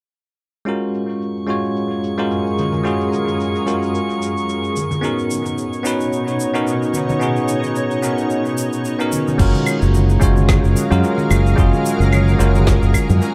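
Relaxed and sunny, this sunset chillout excerpt moves at 110 BPM in 4/4 with a swung sixteenth-note feel, set in F# major and tuned slightly below standard pitch. A bell-like tine electric piano sits up front from 0.7 seconds, its clean tone roughened by vintage sampler grit and trailed by analog delay, while a deep house drum kit of claves, crash, shaker and a woody snare plays from the same moment under low-pass filtering. A shimmering, ethereal ambient pad of detuned sine voices with octave-up shimmer and slow attack fades in at 1.5 seconds, carrying a filter sweep through the opening stretch, and a glassy texture of drifting overtones hovers high above until 9.4 seconds. Soft-handed congas with a vintage, band-limited character join in the background with analog delay, and the chords move from F#maj9 to Bmaj9 and back. At 9.4 seconds a bright, punchy fingered electric bass and a layered electronic kick enter, giving the closing passage a firmer footing within a light, echo-heavy mix.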